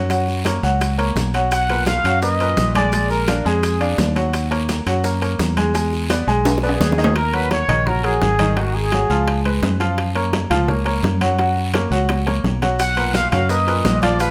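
Passionate and driving, this short salsa cut in Eb minor at 170 BPM sets a bright, up-front baby grand piano with audible action noise and a dark, round fingered electric bass against background congas, low-tuned bongos, metal-shell timbales, a raspy guiro and distant grainy maracas, while a mellow, punchy trumpet section with light vibrato plays the melody in bursts from 1.5 s, 6.6 s and 12.8 s over chords moving from Bmaj7 through Ebm7 to Gbmaj7, with drum fills at 6.5 s and 12.1 s, all in light reverb.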